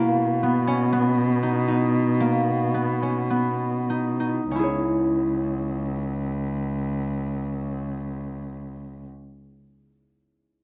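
Restless and pensive, this contemporary instrumental fragment is cut from a longer piece and moves in a straight 9/8. A concert harp plays fingerpicked arpeggios with a ringing, acoustic tone, while a single bowed cello carries the bass line with a warm, nasal, expressive voice shaped by vibrato and portamento. Both players sit up front in a close, detailed recording with light reverb, and the harp's warmth comes through clearly. The opening slows down from 0.2 to 4.5 seconds over a Bmaj7 harmony, then the music shifts to C#m at 4.5 seconds. The cello stops at 9.1 seconds and the harp at 9.2 seconds.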